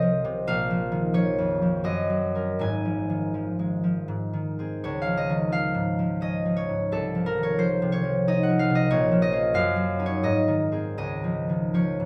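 Dreamy and serene, this short classical passage for solo concert harp unfolds in a rubato 3/4 at 77-94 BPM in D-flat major, its ringing, fingerpicked tone sitting up front and spanning Ab1 to Ab5 within a lush large-studio reverb as the harmony drifts from Bbm through F7/C and comes to rest on Db at 11.0 seconds.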